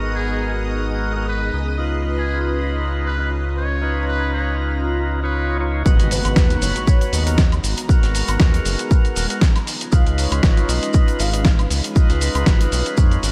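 Hypnotic and late-night, this deep house cut, taken from a longer piece, moves with a swung 4/4 groove and a dreamy, reverb-soaked mix. From the start, an airy, breathy pad holds sustained G#m9 and C#9 chords in the background, while an overdriven tonewheel organ with key click and slow rotary speaker plays gritty stabs through a diffuse delay, both pumping alongside the round, deep analog bass up front. In the opening, a shimmering, warbling string machine adds a faint high texture, and a buzzy, close-miked trumpet with metal mute carries a jazz-style melody with light vibrato and scooped notes. At 5.9 seconds the drop arrives with a quiet electronic impact: a punchy, layered electronic kick leads the beat, joined by a dusty, tape-warm sampler-style kit of hi-hat, shaker, snare and woodblock, and a very quiet big-room rock kit beneath. A mellow, horn-like synth lead with phaser and vibrato then takes over the melody in the background until 13.3 seconds.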